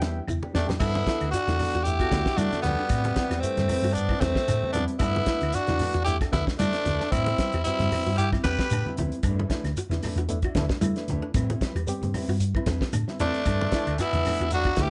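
A lightly swung 16th-note groove at 114 BPM drives this funky, driving afrobeat excerpt: a damped 70s drum kit with a fat snare and a round, punchy hollow-body bass play alongside congas, a grainy shekere and faint woody claves, while a raspy, up-front tenor saxophone with plate reverb carries the melody over a growling alto second line, joined at 8.2 s by a very quiet baritone saxophone before the horns drop out at 8.9 s and return at 13.2 s, against a barky, overdriven electric piano with fast tremolo, a bright fingerpicked qanun playing arpeggios and dark, clean electric guitar stabs in a moderate club room.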